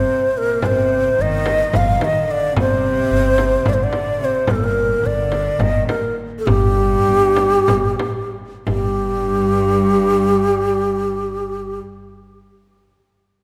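Soulful and melancholic, this Turkish makam ensemble excerpt in 7/8 sets a breathy low ney with vibrato and a soft attack up front on the melody, over a dark, gut-string cello section carrying a bowed second line and a woody pizzicato upright bass. A small, bright frame drum, close and played with soft hands, sits in the background from 0.6 to 9.0 seconds. The tempo slows between 4.5 and 8.7 seconds, and the whole ensemble sits in a moderate concert hall reverb.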